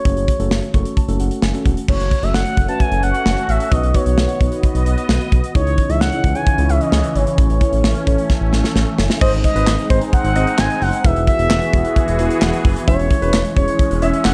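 Synth-pop at 131 BPM with a cool, melancholic mood, in which a smooth sawtooth synth lead with vibrato and tape echo carries the melody over muted, felt-like synth keys, a mellow synth bass and a polished, up-front studio drum kit with tight kick, handclaps and crash, while a bright, detuned resonant pad swells in at 1.9 seconds and an intimate concert grand piano with audible action noise adds a second line from 9.2 seconds, all set in a dark production with light small-room ambience.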